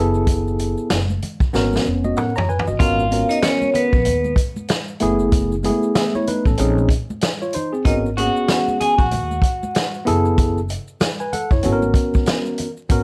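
A bright, ringing vibraphone played with hard mallets carries the melody from 2.8 to 10.0 seconds, its slow motor vibrato set in plate reverb, while a slightly broken-up electric guitar with tape echo plays a second line. Beneath it, this smoky, cool jazz-hop excerpt at 95 BPM rides a swung 4/4 groove from an up-front vintage drum kit with a punchy kick and rolled-off top, which plays a fill from 1.5 seconds. A woody pizzicato upright bass and a clean tine electric piano move through minor eleventh chords, close maracas and congas sit in the background, and vinyl crackle and a small room reverb frame the hip hop sound.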